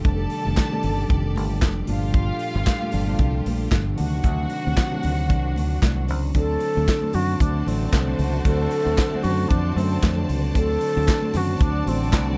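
A sultry, danceable disco excerpt at 114 BPM with a light 16th-note swing opens on a lush, smooth violin section, a worn, slightly out-of-tune tine electric piano, bright bowed strings holding chords and a punchy studio drum kit of kick, snare, hi-hat and handclaps, joined at once by a round, tube-saturated fingered bass and very quiet ringing congas over F13, Gm9 and D7b9 harmonies, with an electric piano fill leading into a breathy alto flute melody with lifted highs at 6.4 seconds and a faint hollow group handclap appearing at 11.1 seconds, all in a dark, dry production.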